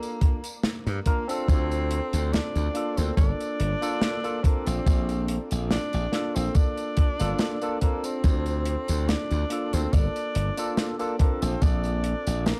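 Woozy and hazy, this slow vaporwave excerpt at 71 BPM in G minor sways with a light sixteenth-note swing as a breathy tenor saxophone sings a jazz-style solo melody with vibrato and scooped notes, roughened by 12-bit sampler grit and tape echo, over a barky tine electric piano run through analog chorus and a combo amp cycling Gm7, Dm7 and Bbmaj7 chords, while a studio drum kit supplies hi-hat, a medium-tuned snare and tambourine, a thumpy, tape-warm electronic kick sits up front from 0.2 seconds, and a glassy, punchy slap bass joins at 0.9 seconds.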